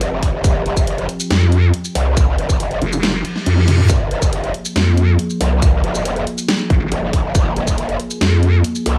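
A nasal, resonant vowel-sweep wobble bass, overdriven and up front, enters at 1.3 seconds and dominates this heavy, chaotic half-time wobble dubstep excerpt, stacked over an aggressive, saturated growl bass with chorus. A punchy, overdriven electronic kick and a dubstep drum kit with a huge snare, hi-hat, shaker and toms drive the groove, while an evolving, morphing wavetable pad sits low beneath them with phaser, reverb and sidechain pumping. The kick drops out at 3.0 seconds as a brief reverse cymbal sounds, overlapping a short drum fill, and the mix has a dry, close studio sound.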